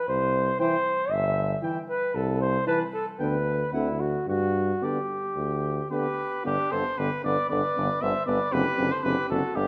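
A triumphant, warm brass quintet excerpt in a classical style, cut from a longer piece, moving with uneven, rubato beats in common time. A mellow flugelhorn with light vibrato opens the passage on the second line, joined almost at once by a clear tuba carrying the bass up front. From 0.6 seconds the trumpet takes the melody with a warm, roomy tone, while a bright trombone with light vibrato and a soft-attacked French horn with vibrato sit in the background as accompaniment. The harmony moves from C through Am/C and G/D to D9 before settling on G, and after the second section begins at 6.5 seconds, a D7/F# arrives at 8.5 seconds. All but the tuba sound distant, bathed in a moderate scoring-stage reverb that lends the group a spacious glow.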